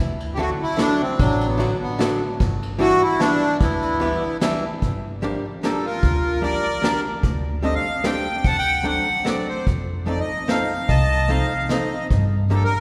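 Bathed in a wet church reverb, this bittersweet, whirling musette waltz is cut from a longer piece and swings lightly in three. A reedy accordion with slow beating carries the melody up front, while a dark, clean, hollow-body electric archtop guitar, picked and compressed, supplies the accompaniment equally close. Underneath, a woody pizzicato upright bass with steel strings and a vintage brush drum kit with a punchy kick, medium-tuned snare, smooth brushes and a rolled-off top keep the dance turning, moving into a new section at 4.8 seconds.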